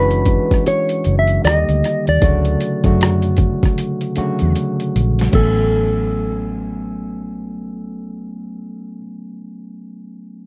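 R&B with a neo-soul lean, this short, smooth and soulful clip sits at a relaxed 77 BPM in 4/4 with a swung sixteenth-note feel in A major. A mellow, clean electric guitar carries the melody in a fingered, dark tone with a slapback echo, while an overdriven tine electric piano fills out the accompaniment with a barky, gritty bite through a combo amp, sounding on until 10.5 seconds. Underneath, a vintage muted fingered electric bass gives a round, foam-muted low end that stays up front alongside the other parts. A boom bap sampler-style drum kit, pitched down and compressed with a thumpy kick, medium-tuned snare, rim click, hi-hat and crash, plays only until 5.6 seconds, with a fill from 4.6 to 5.3 seconds. The harmony moves through lush extended chords such as E13 and Dmaj7 before settling on Amaj13 at 5.3 seconds, all in a dry, dark production.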